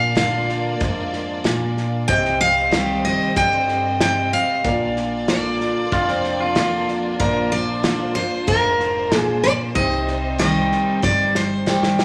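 A straight 4/4 groove carries this lonesome, dusty honky-tonk and classic country passage, cut from a longer piece. A bright, up-front picked steel-string acoustic guitar plays the melody over a full-bodied jumbo acoustic picked accompaniment, with a dark, intimate baby grand piano in the background, smooth bowed violin section chords and a woody, thumpy pizzicato upright bass. A natural small-room drum kit with a tight kick comes in at 0.2 s, a twangy, compressed clean electric guitar adds a brief second line at 5.9 s, and the drums close with a fill at 11.0 s, all set in a wet studio reverb.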